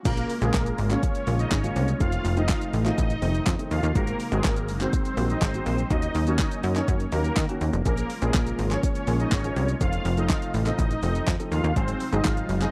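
A faint, breathy pad opens this driving, confident dance-pop excerpt in Bb minor at 123 BPM, and almost at once the full drop arrives as a detuned supersaw lead carries the melody with phaser and slapback echo over chords that cycle from Bbm7 through F7, Ab7 and Ebm7. Up front, a punchy, funky analog bass with a plucky filter attack and a deep house kit of deep kick, fat snare, handclaps, hi-hat, shaker and crash drive the groove, the bass pumping from sidechain compression. Behind them, a dark, mellow baby grand with audible action noise also pumps, all in a dry, close recording with a 1970s studio character.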